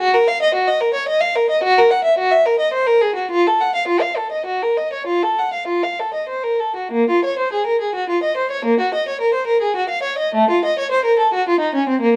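In a flexible, rubato 3/4 that drifts between 91 and 115 BPM, this introspective, flowing baroque-style suite movement in Bb minor is carried by a single unaccompanied violin. The rich, bowed tone is smooth and even, with vibrato, and sits up front, moving between A3 and Gb5 before a new section begins at 6.9 seconds. A moderate stone-room reverb and a dark production surround the solo line in this short cut from a longer piece.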